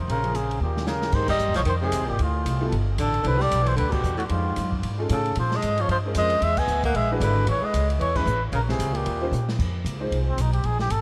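A cup-muted trumpet carries the melody up front, its soft, veiled tone touched with light vibrato and a breathy, smooth top, colored by an analog delay and taking a short solo from 9.6 seconds. This is a moody, late-night slice of small-group swing and bop at 227 BPM in 4/4, with a swung eighth-note feel. Beneath it, a woody, thumpy pizzicato upright bass with gut strings sits prominently, while a breathy tenor saxophone with scooped notes adds a second line until 9.5 seconds. An open acoustic drum kit with dark cymbals, a medium-tuned snare and a boomy kick plays quietly, with a fill just before the harmony settles on Abmaj9 and band accents punctuating the middle stretch. A clear concert grand piano, treated with ensemble chorus, comps in the background through changes such as Cmaj9, F7alt and Eb13. A huge ambient reverb soaks the mix in a dreamy haze, and the passage is cut from a longer piece.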